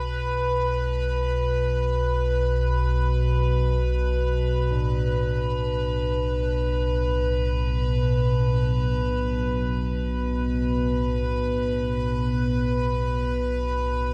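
A deep, rumbling drone dominates this dark ambient piece, sitting up front with a wave-folded blend of triangle and sawtooth tones that swells in slowly, sustains across the full 14.1 seconds and fades on a long release, all bathed in its own reverb. Above it, an eerie, inharmonic drone built from FM, sawtooth and ring modulation shimmers through chorus and reverb, also up front and also holding for the whole span. Together they settle on a B5 chord from the very start, creating a vast, ominous atmosphere in free time. At 4.7 seconds a very quiet bronze singing bowl enters with meditative arpeggios, its brilliant, ringing tone struck with a wooden striker and carrying a slow beating until it stops at 11.5 seconds. The dark production places everything in a wet, cathedral-like space with a long 6.4-second decay, a section cut from a longer work.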